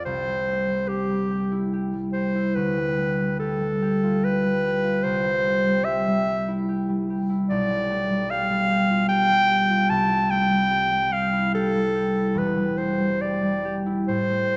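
In a triple metre with uneven, rubato beats, this tender, serene romantic classical excerpt pairs a clarinet and a concert harp for about 14.6 seconds. The close-miked clarinet sings the melody up front with a clear, classical tone. The fingerpicked harp rings out a warm accompaniment reaching deep into its low register, and both sit in the moderate reverb of a concert hall over a chord progression that moves between C and G7 before closing on E minor.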